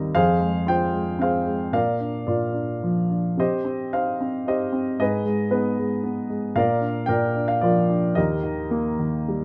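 Sunny and warm, this short classical fragment of a longer piece features a solo baby grand piano in a lyrical style, moving at 112 BPM in 3/4 with uneven beats and a flexible rubato feel. The piano sounds present, polished and up front, spanning Eb2 to G5 as the harmony passes through Fm, Bb, Cm, Abm and Bb before settling on Eb at 8.2 seconds. A moderate small-room reverb surrounds the tone.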